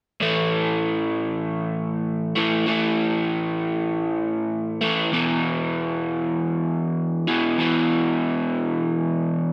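A straight 4/4 rock pulse drives this brooding, cinematic fragment of a longer piece, where a crunchy, overdriven electric guitar, picked and double-tracked up front, plays a low riff on an A5 chord before shifting to E5 at 5.1 seconds, set in a lush hall reverb.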